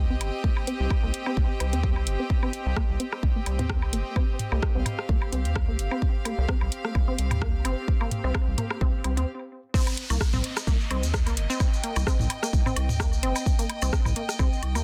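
Hypnotic and sparse, this minimal techno cut in C minor at 129 BPM, with a 16th-note swing, pairs a punchy, up-front kick and a rubbery, wave-folded square bass with a squelchy, detuned blip pluck carrying chorus and tape echo, an earthy bowed chamber string section, a house kit with metallic hats and rim clicks, and delayed electronic woodblock and toms. The bass, pluck and strings pump against the kick, and everything sits dry in a dense, heavily limited master. A filter sweep plays across the pluck until a brief stop at 9.3 seconds gives way to the drop at 9.7 seconds, where a downlifter falls and grainy, distant maracas join.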